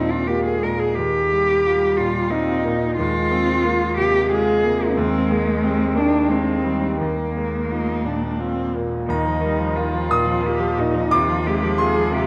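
Neoclassical piano and strings in 3/4 at 89 BPM, played with a rubato feel in Eb major, this short piece cut from a longer work feels intimate and hopeful. A bright concert grand piano carries the accompaniment across a broad span from Eb2 to Eb6, brilliant and open with deep bass, long sustain and an up-front presence. A bowed cello, a single player with vibrato, sings the second line from Ab3 to Bb4, its tone warm and focused and also placed up front. Beneath it a lone bowed viola adds accompaniment between C3 and Eb4, smooth and even with a softened top. The harmony rests over an Eb bass, moving through Ebadd9, Fm/Eb, Abmaj7/Eb and Bb7/Eb before the opening phrase returns at 9.1 seconds. A wet recital hall reverb with a 1.6-second decay surrounds the players.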